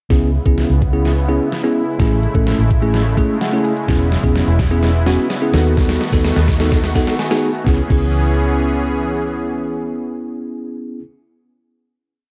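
A short dance-pop piece in C# minor at 127 BPM opens at once with all four parts together: a bell-like tine electric piano playing bright, close-voiced syncopated chords, a smooth detuned supersaw pad holding sustained chords beneath it, a dark, round, foam-muted fingered electric bass with a punchy syncopated figure, and an up-front pop drum kit with a knocking kick, deep snare, crisp hats and crash cymbal. The mood is bittersweet yet driving, and the piano, pad and bass all pump against the sidechain. Across the build, the harmony moves from C#m7 through Amaj7, E6 and B7/D#, while the drums play a running fill and the electric piano adds short fills around 3.2 and 6.7 seconds. The drums carry a tape-warm, layered, electronic character and stop at 8.0 seconds, leaving the piano, supersaw and bass to sustain a final C#m7 chord. The whole has a light reverb and the soft, homemade feel of a cassette recording.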